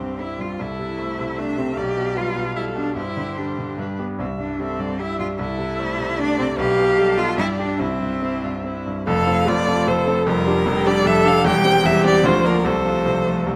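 In a rubato three-four lilt, this quick, cheerful and graceful classical-period piano quartet excerpt sets a rich, smooth-topped bowed violin melody over a focused cello second line, both sung with vibrato, while a warm, even viola and a bright, brilliant grand piano, placed up front, accompany in a moderate concert hall reverb captured close and detailed, with the harmony turning to a new section at 9.1 seconds.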